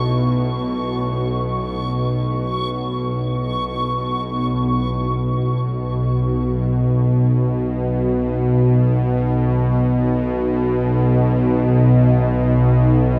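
A cavernous cathedral reverb with a 6.3-second decay envelops this unsettling dark ambient drone, heard in free time in B major with tuning at A4 = 442 Hz, cut from a longer piece. Up front, a tense, string-like bowed drone with a sawtooth edge, detuned unison, a noise layer and vibrato holds the low register throughout, while a very quiet, deep and moody pad sustains chords above it with chorus, a sub octave and a moving notch. A reversed, dreamy granular texture swells on a single bright high note for the opening 4.7 seconds, as the harmony shifts from a rootless Dadd9 to B.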